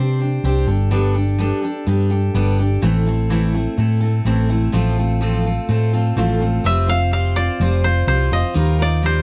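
Folk rock with a heartland rock glow, this short excerpt moves at 126 BPM in a straight 4/4 and carries a hopeful, warm mood. A bright, full-bodied jumbo steel-string acoustic guitar, picked and up front, supplies the accompaniment from the first moment, alongside a dark, round hollow-body short-scale electric bass played with the fingers and sitting prominently in the mix. The harmony travels from Csus2 through Gadd9, Am and F/A before shifting at 6.6 seconds to Fsus2 and then Ebadd9. Just after that shift, at 6.7 seconds, a woody koto played with fingerpicks enters with the melody in a high register. The sound is dry and close, in the manner of a 1970s studio recording with little reverb, giving each instrument an intimate presence.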